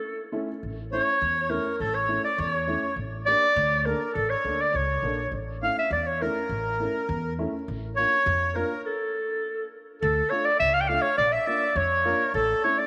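A warm, up-front clarinet carries this bittersweet, festive klezmer fragment in 2/4 with jazz-style vibrato and a vintage subtone, opening alone before a dark, woody upright piano with audible action noise, a thumpy pizzicato upright bass on steel strings and a reedy, slowly beating accordion second line join in turn, all bathed in moderate plate reverb, with a full stop at 8.8 s before a new section begins at 10.0 s.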